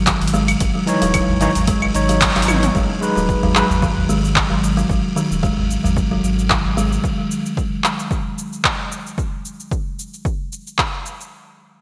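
A buzzing, woody kalimba plays up-front arpeggios through a low-pass filter and digital delay in this hypnotic, earthy organic downtempo excerpt, set over a round sine sub bass with sidechain pumping, a punchy electronic kick and an up-front deep house kit of cabasa, claves, handclaps, hi-hat and toms, both drum parts carrying overdrive and the kit treated with gated reverb, while a barky, gritty tine electric piano with tremolo and delay appears from 0.9 to 3.7 seconds and a deep, band-limited udu sits in the background, the whole sitting in a lush hall with a bright 1980s-style digital sheen.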